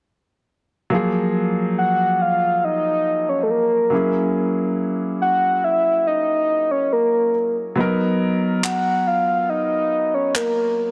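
A warm grand piano opens this dreamy, tender contemporary R&B excerpt at a slow, straight pace, laying down lush jazz-tinged chords that move from F#maj9 through F#9 to Bmaj7. At 1.8 seconds a soft, octave-layered synth lead takes the melody, its round, dark tone sitting up front with chorus, vibrato and a digital delay. Airy, polished handclaps arrive at 8.6 seconds, all set in a moderate plate reverb within a dense, heavily limited modern master.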